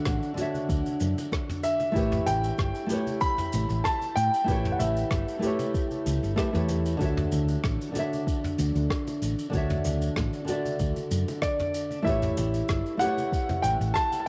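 A gently swung sixteenth-note groove in 4/4 carries this blissful, smooth sunset chillout passage, cut from a longer piece and recorded at home on cassette in a moderate spring reverb. A soft electronic kick, re-recorded in a large room, sits beneath a small-room brush kit of hi-hat, rim click, shaker and toms, while very quiet congas add a bright, hard-handed touch. A round hollow-body electric bass, fingered and amped, anchors the low end as the harmony moves between Dmaj9 and A7. Up front, a dark, fingerpicked classical nylon-string guitar plays accompaniment throughout, its finger squeaks audible through cassette tape, analog delay and shimmer reverb. An intimate, natural-sounding grand piano with audible action noise and deep bass carries the melody through the same tape, delay and shimmer treatment, pausing at 6.6 seconds and returning at 11.4 seconds.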